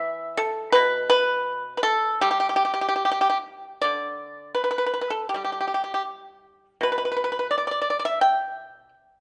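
Rubato timing floats loosely around 72-86 BPM in 4/4, giving this short cut from a longer Chinese traditional piece an elegant, serene calm in the G gong mode. A solo pipa, played with fingerpicks, carries everything from B2 up to G5 with a mellow, percussive tone that sits dry and up front, set in a moderate recital-hall reverb. The phrase shifts into a new section at 3.8 seconds, and the pipa rings on until 8.9 seconds.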